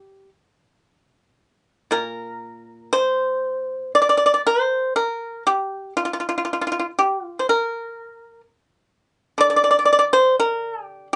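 This is a Chinese traditional recording for solo plucked strings, an 11.2-second fragment cut from a longer piece, with a contemplative, elegant mood. The pipa plays alone throughout, moving in free rubato time around 55-62 BPM in 4/4 and ranging from Bb2 up to D5. Played with fingerpicks, it sounds percussive and dry, with a warm acoustic body, and sits up front in the mix. A brief opening passage gives way at 1.4 seconds to a longer second section that carries the rest of the fragment. The sound has a light reverb, a top end that stops at 10.3 kHz, and tuning set to A4 = 439 Hz.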